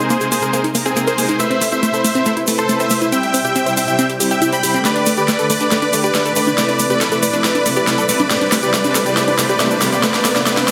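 This uplifting trance excerpt in C major moves at 139 BPM in a straight 4/4, with a soaring, euphoric mood that builds throughout. A huge, bright supersaw lead sits up front carrying the melody, its sawtooth unison voices sharpened by a fast attack, shaped by a low-pass filter and trailed by dub echo. Beneath it, a chamber string section holds sustained chords with a soft attack and a pure, floating, distant quality, while a punchy unison pluck spins arpeggios built from detuned sawtooth, sine and a noise layer, with a moving notch and its own dub echo. A grainy, close and dry egg shaker ticks in the background alongside a layered, electronic big-room kit whose metallic hats and high-pass-filtered snare launch into a drum fill at 4.9 s, and an electronic riser creeps in at 6.4 s. The harmony moves through Abadd9, Amadd9, C, Gadd9 and C again before landing on F, all set in a lush hall reverb with a heavily compressed, radio-style sheen.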